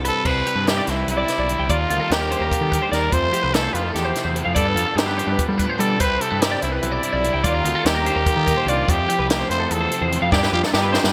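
Math rock and Midwest emo in C major, this playful, bright excerpt moves at 292 BPM in eighths through a straight 7/8, cycling Cmaj9, Ebmaj9, Fmaj9 and G9 before landing on G7. A raspy, growling trumpet with light vibrato carries the pop-style melody up front from 0.1 s. Beneath it, a twangy twelve-string electric guitar spins chorused arpeggios in the background while a second twelve-string picks compressed accompaniment. A double-tracked, overdriven guitar riff with lush chorus and a warm, overdriven picked bass fill out the low end, and a dry cocktail kit with a high-tuned snare, tight kick, dark cymbals and gated reverb drives the groove into a drum fill at 10.3 s, all set in a hall reverb with bright 1980s-style digital sheen.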